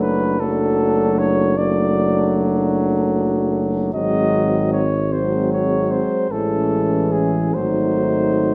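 In a 12/8 metre with a slow dotted-quarter pulse, this rubato, hymn-like brass band passage unfolds with an elegiac, melancholic mood. It is cut from a longer piece and runs 8.5 seconds. A mellow flugelhorn carries the melody up front with a smooth top. Beneath it, a French horn section adds a second line from the background, shaded with a light vibrato. A clear, close-miked trombone and a dark euphonium, the latter heard further back, fill in the accompaniment, while the tuba anchors the bass up front with a soft attack. The harmony moves from D/F# through G#7 and Amaj7 to a poignant G#7b9, all set in a moderate recital hall reverb that lends the classical-style playing a gentle sense of space.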